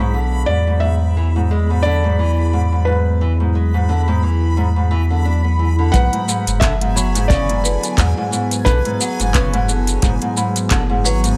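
The recording sits in a soft wash of studio reverb, with a lo-fi, nostalgic haze that gives this delicate, wistful folktronica piece an intimate glow. A warbling, detuned tape-like pad holds mellow sustained chords with chorus, while a boxy, fingerpicked nylon-string guitar plays small arpeggios through tape echo and a round, sine-like sub bass sits up front beneath them. High above, a reversed, granular texture swells with a bright, dreamy shimmer, and from 0.5 s a felt-muted upright piano carries the melody, its thin felt and audible action noise close and hushed. At 5.9 s the harmony moves from E7 to Bm6 and the groove arrives: a dark, punchy acoustic kick played with brushes stays in the background, joined by an electronic kit of crisp hi-hats, handclaps and shaker with a tape-warm, produced finish, all swung gently on the sixteenths. A woody marimba with padauk bars and medium hard mallets enters at the same moment, adding a quiet second line in the background through its own tape echo.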